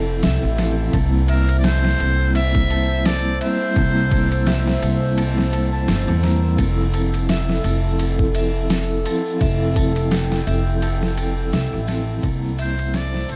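Smoky and brooding, this trip hop excerpt moves at 85 BPM with a lightly swung 4/4 feel over Fmaj7 and C7, anchored by a woody, up-front pizzicato upright bass and a compressed, pitched-down boom bap sampler kit with a thumpy kick, overdriven grit and studio reverb entering at 0.2 seconds. A ringing vibraphone with tremolo and tape echo carries the accompaniment, while a moody sawtooth pad with chorus, phaser and 12-bit sampler grit and a bright fingerpicked concert harp with tape echo sit in the background, joined by a faint tambourine from 6.6 seconds. A buzzy, metal-muted trumpet with dub echo states a brief melody from 1.3 seconds and returns near the end as the piece fades out from 10.4 seconds, all framed by a dry, gritty small-room sound with vinyl crackle.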